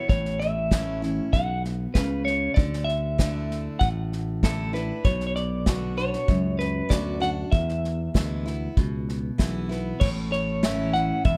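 A twangy clean electric guitar carries the melody with tremolo over a full-bodied, fresh-stringed steel-string acoustic guitar from the start, joined at 0.1 seconds by a growly, up-front fretless electric bass and an airy acoustic drum kit played with bundle sticks, tight kick and dark cymbals, giving this nostalgic, down-home honky-tonk country fragment its dark, lightly reverberant sound as it moves through A, Dsus2, Bm and E before returning to A at 10.0 seconds.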